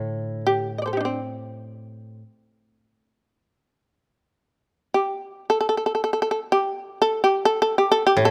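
Close, detailed miking and light reverb frame this meditative, solitary fragment of Japanese traditional chamber music in free time, where a powerful, buzzing, fretless shamisen carries the plectrum-plucked, percussive melody up front while a dry, woody koto, played with fingerpicks, adds low accompaniment for the first 2.2 seconds and returns briefly at 8.2 seconds.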